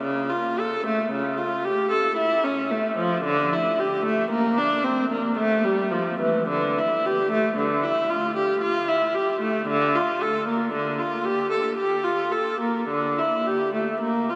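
A single bowed viola sounds up front from the very start, its rich, smooth tone carried by vibrato through a serene, radiant baroque-style suite movement for unaccompanied viola. The playing moves in a rubato 3/4 at about 56 BPM, even and unhurried, settling into D minor from 6.5 seconds. A cathedral reverb with a 6.4-second decay surrounds the lone instrument throughout this 14.4-second fragment of a longer piece.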